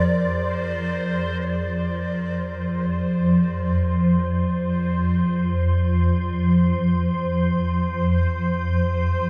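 A cavernous, drenched reverb surrounds this dark ambient drone in free time and F dorian, where an up-front swarming, detuned drone warbles tensely beneath a bubbling, resonant sawtooth texture with random filter steps and chorus that fades in from 1.4 seconds, while a breathy bamboo shakuhachi with chiff and vibrato sounds a brief D5 with delay, and a very quiet bronze singing bowl rings meditative felt-mallet arpeggios until 3.9 seconds in this fragment cut from a longer piece.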